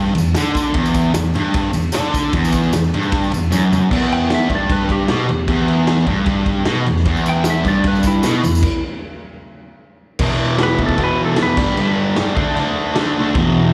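Swaggering and raw, this garage rock excerpt at 152 BPM in E minor drives a double-tracked fuzz guitar riff with slapback echo over a punchy, gritty drum kit and a jingly tambourine, and a twangy clean lap steel slide melody enters at 4.1 seconds, all heard as a live club gig through the venue's PA, with a drum fill at 3.5 seconds and a stop from 8.6 to 10.2 seconds.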